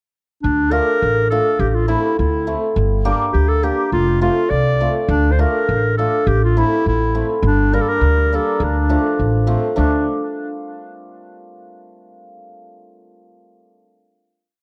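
Klezmer in D minor at 103 BPM in a straight 2/4, this short, complete piece feels soulful and festive at once. A warm, classical-style clarinet carries the modal, ornamented melody as the up-front soloist, its line touched by tape echo. An upright bass plucked on steel strings gives a woody, growly pulse of roots and fifths on the main beats, entering with the clarinet at 0.4 seconds. A bright hammered dulcimer joins at 0.7 seconds with shimmering off-beat triads that ring out through plate reverb. The harmony moves from Dm through Am, Gm and F before returning to Dm, and the piece closes on a final chord from 9.8 seconds, heard through light reverb and the soft grain of cassette tape.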